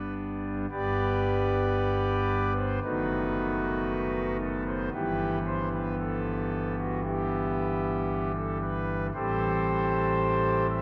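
Bathed in a long, wet cathedral reverb with rolled-off highs, this short cut from a longer classical chorale-style piece features a solo pipe organ on thick, up-front foundation stops, its romantic voicing spanning F#1 to E5 as reverent, majestic chords move from G through B7/F# and Em/G to Am7.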